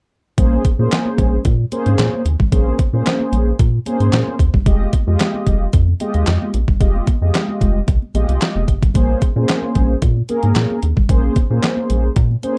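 A straight 4/4 groove from a detuned, overdriven 8-bit drum machine with a thumpy kick, snare, handclaps and hi-hat drives this slick, danceable early-eighties boogie funk excerpt, where a rubbery, hollow square-wave bass sits up front beneath mellow, brassy synth brass with chorus and vibrato moving from Bbm9 to Fm9 and back, while soft-handed, high-tuned congas sit in the background of a dark production with light reverb and lossy compression artefacts.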